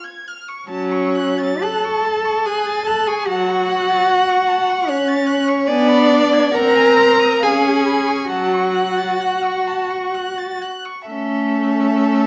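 In a rubato 3/4 that drifts between 62 and 78 BPM, this slow romantic movement for string quartet unfolds in F# minor with a melancholic, solemn mood. The first violin opens alone before the other three players join at 0.7 s. It carries the melody high, from E5 to A6, with a focused, vibrato-laden tone that sits softly and at a distance. Closer and louder, the second violin sings a smooth, even inner line, and the viola adds clear, steady accompaniment up front. The cello holds the bass with a rich, expressive voice, soft attacks and gliding portamento. The harmony moves from F# minor through diminished and dominant-seventh colours back to F# minor, then turns to A major at 11.1 s as a new section begins, all set in a moderate recital-hall reverberation before this excerpt breaks off at 12.3 s.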